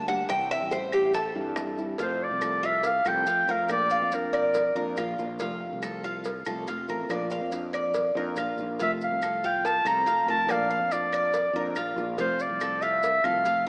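This sunny Cuban son and guajira excerpt in F major at 141 BPM opens with the metallic, double-stringed Cuban tres picking arpeggios up front, over dark, fingerpicked nylon-string guitar with audible finger squeak, a round fretless electric bass, and background percussion of grainy maracas, woody claves and tight, high-tuned bongos and cowbell, before a distant, classical-style clarinet takes the solo melody at 2.0 seconds and returns at 8.8 seconds over an F and Bb progression, all steeped in lush hall reverb with the rough, small-speaker sound of a home demo.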